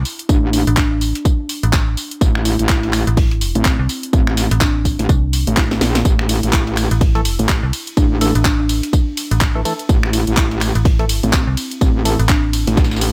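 Swaggering and aggressive, this dry bass house cut at 125 BPM in A phrygian rides a swung groove. A punchy, up-front electronic kick and a house kit of snaps, claps, hi-hat, ride and cracking snare sit over a very quiet, gritty sampler-style kit with hi-hat, snare and tambourine, with a drum fill at 5.6 seconds. Two basses drive it: a metallic FM bass with overdrive and a distorted, wobbling wobble bass with chorus, both pumping under the sidechain. A woody, dark kalimba melody plays above them, and from 7.2 seconds a hollow, nasal organ stab with chorus and dub echo joins in.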